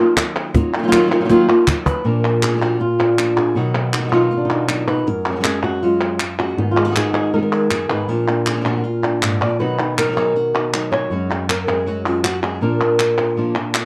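A dry, close, small-room recording with a vintage studio character opens this intense, passionate flamenco passage cut from a longer piece, where an up-front fingerpicked guitar carries the melody with fresh strings and audible finger squeak over a second, softer fingerpicked guitar playing stabs, while crisp, up-front palmas hand claps run throughout and a snappy cajon played with soft hands appears only from 0.2 to 1.9 seconds, including a brief fill before the guitars move into a longer second section at 2.0 seconds.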